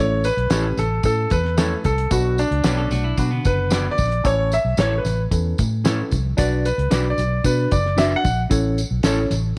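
A clear, intimate grand piano leads this driving, passionate stretch of uptempo 1960s-style soul at 112 BPM, its melody carrying audible action noise over a worn, slightly out-of-tune tine electric piano with overdrive and phaser and a round, foam-muted fingered bass sitting up front, the harmony moving between A and Bm. From 0.2 s a dry, cloth-damped drum kit with a fat snare and tight kick enters together with jingly tambourine and barely audible congas, and from 0.5 s a slightly broken-up electric guitar adds picked stabs with slapback echo. A dark, clean guitar riff with subtle chorus appears briefly at 2.6 s, and the mix sits in light studio reverb.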